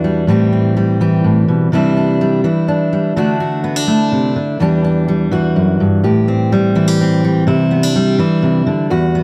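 A single fingerpicked steel-string acoustic guitar sits up front in a moderate echo-chamber reverb, its dreadnought body and fresh strings giving a warm tone, with finger squeak audible along the way. This short folk piece in 3/4 moves with a straight feel and carries a yearning, stirring mood across its 9.2 seconds, taken from a longer work. The guitar plays alone throughout, ranging from E2 up to G4. Its harmony cycles through Am7, Cadd9, D and Em7 before returning to Am7 and Cadd9, and the passage reads as a build-up from start to finish. The tuning sits slightly below standard pitch, at A4 = 438 Hz.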